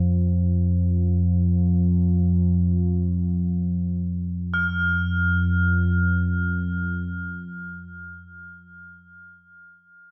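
World meditative music, spacious and peaceful in this short cut from a longer piece, where a deep, ominous drone with a detuned sawtooth edge, slow attack and its own reverb evolves from the start, joined at 4.5 seconds by high, shimmering crotales struck with hard rubber mallets, soft and airy up front, all set in a wet recital hall reverb.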